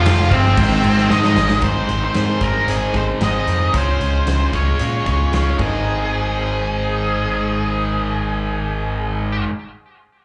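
A dark, fuzzed-out octave lead guitar sits up front, carrying the melody across the whole clip with distortion, plate reverb and a slapback echo. This is bittersweet, restless quiet-loud alternative rock in a straight 4/4, cut from a longer piece and heard as a live gig through the venue's PA with a club-like reverb and a rolled-off top end. For the opening 1.6 seconds, a very quiet, distant bowed chamber string section with expressive vibrato and two very quiet guitars, one sludgy and double-tracked, the other a thick, bright fuzz, thicken the sound alongside a scooped, high-gain guitar riff that continues throughout. Beneath it all, a round, overdriven picked bass sits up front, while a big acoustic drum kit with a punchy kick and medium-tuned snare plays a fill before dropping out at 5.7 seconds. From 1.6 seconds, a slightly broken-up, lo-fi guitar through a small old amp adds compressed arpeggios touched with subtle chorus, plate reverb and tape echo as the harmony moves from Fmadd9 to Ab and Db.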